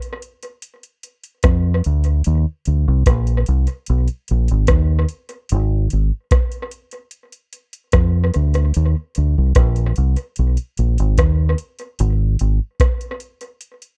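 A dark, round electric bass sits up front in this tender, romantic lovers rock reggae excerpt. It is fingered with a deep dub tone and runs from 1.4 to 12.6 seconds. Alongside it, a soft vintage rhythm box, also up front, holds a straight 4/4 pulse from the very start, its analog kick sounding deep against metallic hats and a rim click. The drum machine carries an overdriven edge and a tape echo, and it sounds as though it was re-recorded in a large room while still sitting close in the mix. The bass comes through direct and amped, and the recording as a whole has a dry, close 1970s studio character. The rhythm box plays briefly on its own before the bass arrives, and again after the bass drops out near the end of this cut from a longer piece.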